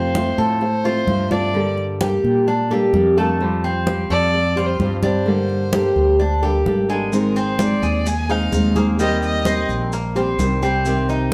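A dark, bowed violin carries the melody, played sul tasto by a single player with light vibrato, a soft attack and a smooth, intimate top, before falling silent at 9.7 seconds. This is a danceable, warm slice of Cuban son and guajira at 129 BPM in a straight 4/4, cut from a longer piece. Up front, a metallic Cuban tres picks arpeggios on its double strings, some octave-doubled, while a punchy fretless electric bass sounds direct and amped beneath it. A fingerpicked flamenco guitar adds shadowy acoustic accompaniment, and close, dry congas with a thick, damped skin sit in the background, joined at 7.1 seconds by grainy, mellow maracas. The harmony moves from F through Gmadd9 and Fadd9 to Ab and Eb6, and the band, playing live in one room, is wrapped in a wet studio reverb.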